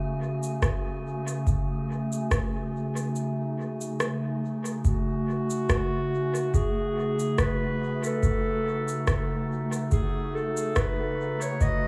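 A warbling, nostalgic tape-like pad holding a dark F#m69 chord and a breathy, wind-like noise layer open this spacious, deep ambient dub excerpt in F# dorian at 71 BPM with a gentle swing, soon joined by a deep, tape-warm electronic kick and an overdriven cabasa and rim click trailing dub echo, with the kick dropping out from 3.2 seconds and returning at 4.8 seconds just as a mellow, distant clarinet enters with an echoing solo line, all set in a roomy, echo-heavy plate-reverb mix.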